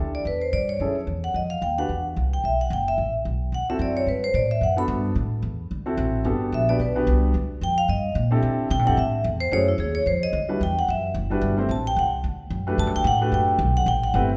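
A church-like recital hall's lush reverb surrounds this playful, sophisticated stretch of small-group swing and bop, taken from a longer piece and swinging briskly at 220 BPM in 4/4 and G major. An up-front upright piano with a warm, woody, long-sustaining tone comps through rich chords while a woody, thumpy pizzicato upright bass with steel strings drives the bottom. A close-miked, metallic vibraphone struck with medium hard mallets rings out the melody with a slow motor vibrato before stretching into a solo at 6.3 seconds.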